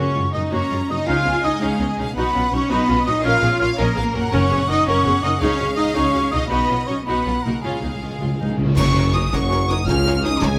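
This excerpt from a heroic adventure film score opens on a full string body, with a smooth, vibrato-rich violin section carrying the melody over lush violas, a focused cello section and expressive double basses, while an airy, distant flute plays a second line above. A very quiet, ringing harp adds thumb-plucked arpeggios, and a second, lusher violin section joins at 0.5 seconds with its own line. Set in a lilting 6/8, the passage feels adventurous and bold as it moves through its chord progression. Timpani struck with hard mallets sound in the background on short hits before a fill near the end of the opening stretch, while a bright cymbal swell with clash cymbals and bass drum gathers beneath it. At 8.8 seconds the ensemble lands an accent as a mellow, tight French horn section enters with sustained chords, a soft tuba reinforces the low end, and a dark, dry snare, cymbal and bass drum kit plays very quietly underneath. 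The sound is close and detailed with light reverb, and the passage is cut from a longer piece.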